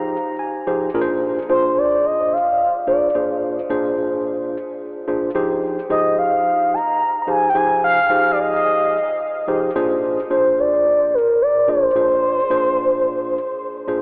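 A straight funk groove in common time sets a slick, late-night mood in this short cut from a longer piece. A tine electric piano opens with a brief fill over the first 0.9 seconds, then carries the accompaniment through changes from Fm7 to Bb7 and later Bb9. Its tone is worn and slightly out of tune yet clean and direct, sitting up front. At 1.5 seconds an expressive synth lead enters with the melody: a dark, smooth sawtooth voice with a soft attack, long sustained notes, vibrato, chorus and a moving notch that keeps it evolving. A diffuse ambient delay trails the lead, and a huge, wet reverb soaks the whole mix into a dreamy haze with the sound of an AM radio.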